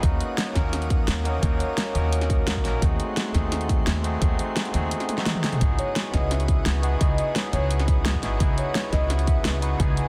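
Liquid drum and bass at 172 BPM with a melancholic, dreamy mood, where a punchy electronic kick and a pop drum kit with a fat snare drive beneath a woody, thumpy pizzicato upright bass with tube saturation, a barky, overdriven tine electric piano comping through a combo amp, and a soft, breathy pad with chorus and sidechain pumping, before a drum fill at 5.1 seconds leads into a velvety, detuned synth lead with vibrato and 12-bit sampler grit that enters in the background at 5.8 seconds over the shift from G#7b9/D# to C#m11, all in a dense, heavily limited mix with light reverb.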